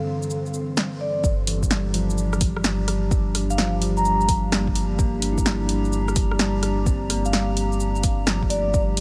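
A mellow vibraphone played with soft mallets carries the ringing melody through a dub echo in this ghostly, melancholic future garage piece at 128 BPM in G dorian, swung on the 16ths. A warbly, nostalgic tape-like pad with chorus and a bell-like tine electric piano in the background open under filter sweeps over a Gsus4 chord, joined briefly by a very quiet, breathy wind-like noise texture, while a deep house kit with a woody snare, dark hats, rim click and shaker sits up front from 0.2 seconds. At 1.2 seconds the harmony moves to Gm7 as a round sine sub bass with tube saturation and a deep electronic kick drum arrive, with sidechain pumping on the bass, pad and electric piano under light reverb.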